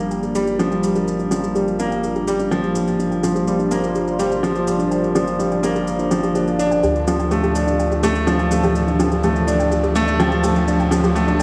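Steeped in a wet echo-chamber reverb, this moving, hypnotic piano-and-strings electronica build-up sets a clear, up-front baby grand riff with digital delay over a lush, detuned unison pad and a soft, warbling pluck arpeggio, both filter-swept and chorused in the background, while a deep analog bass anchors the Gm7 harmony that turns to Dm at 6.8 s, an overdriven shaker ticks along, and a very quiet riser enters at 4.0 s.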